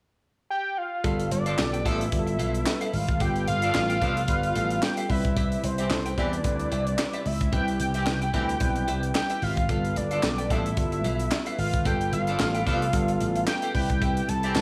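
A fat, detuned analog lead with slapback echo carries the melody from 0.5 seconds in this feel-good, danceable slice of early-eighties boogie funk. At 1.0 seconds the rest of the band arrives over G9 and Cmaj7 chords: a tight, dry funk kit with a high-tuned snare, handclaps and hi-hat drives a swung sixteenth-note groove alongside a punchy, tube-saturated slap bass, joined by a worn, slightly out-of-tune tine electric piano, a clean guitar riff with lush chorus sitting in the background, and a shimmering, very quiet pulse-width pad. From 1.5 seconds a distant, roomy horn section with light vibrato adds a second line, and the whole mix sits in a small studio room.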